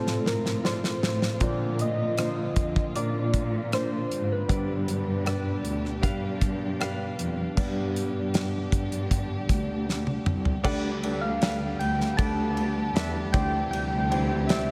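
A dreamy mix soaked in cathedral reverb frames this emotional, melancholic pop ballad in a straight 4/4, cut from a longer piece. A soft, round synth lead with a gentle, keys-like struck tone carries the melody, colored by chorus and tape echo, over a clear, polished baby grand piano dressed in lush chorus. Bowed studio strings hold smooth sustained chords, while a dark symphonic cello section, expressive with vibrato and a soft attack, supplies the bass. A damped 70s drum kit sits dry and up front, with a fat snare, tight kick and dark cymbals; it opens with a fill and plays another at 9.9 seconds, and the piano takes a solo from 7.6 seconds. The harmony moves from F through Bbadd9 and G before settling on Gadd9/D and Cadd9/D.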